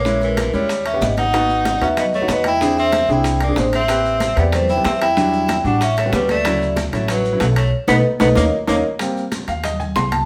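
A live, one-room studio sound with a wet reverb frames this lively, danceable Afro-Cuban jazz excerpt at 188 BPM in straight 4/4. Soft-mallet vibraphone carries a mellow, ringing melody over an edgy, forceful tenor saxophone second line with vibrato and scooped notes, while a woody, thumpy pizzicato upright bass and a clear concert grand piano hold down the harmony; very quiet, tight bongos sit beside warm, distant congas, ringing metal-shell timbales and grainy maracas in the background. The vibraphone and saxophone stop at 8.8 seconds during a band accent and drum fill, and the grand piano takes a solo from 9.0 seconds.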